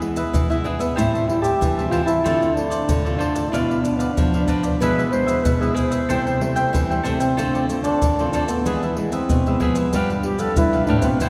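A mellow, jazz-style trombone carries the melody from 1.0 seconds, singing with light vibrato and scooped notes in a present solo voice over this nostalgic, lively samba and choro in A minor at 94 BPM. At 4.8 seconds an airy wooden flute joins with a second line, its crisp attack and gentle vibrato adding a woody shimmer above. Beneath them, a bright, crisply picked cavaquinho and two fingerpicked classical nylon-string guitars fill out the accompaniment and the bass line, one guitar full-bodied with audible finger squeak and the other sitting in the background. Pandeiro, maracas, tamborim and a tight surdo, played with soft hands, sit close, dry and up front, and a drum fill closes the passage at 10.7 seconds. The harmony moves through minor sevenths, a diminished chord and dominant E and G7 chords, all set in a lush church reverb with a faint mains hum, in what is clearly a cut from a longer piece.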